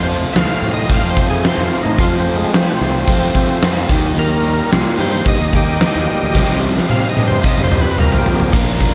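Classic rock at 110 BPM, sunny and driving, this excerpt features a gritty, percussive overdriven tonewheel organ soloing with key click, chorus vibrato and slapback echo over the chords F, Eb and Csus4. Underneath sit a growly fuzz fingered bass, a crunchy overdriven guitar and a compressed overdriven electric guitar playing riffs in the background, a very quiet shimmering octave-doubled twelve-string acoustic guitar and a faint jingly tambourine. A huge arena drum kit, up front with a fat snare, boomy kick and bright cymbals, enters at 0.3 seconds and plays a fill from 6.4 seconds, all set in a moderate concert hall reverb with a dark top end.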